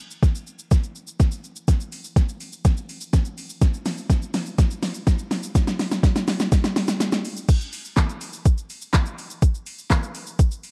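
A smooth R&B drum kit opens this driving, bittersweet pop clip, working through a build-up and fill of soft kick, fat snare, metallic hi-hats, shaker, handclaps and crash cymbal in a straight 4/4 feel. At 7.5 seconds the groove drops in, the overdriven, electronic kit sitting up front until it cuts off at 10.7 seconds. Light reverb and a digital ambience lend the production a dark, warm cast.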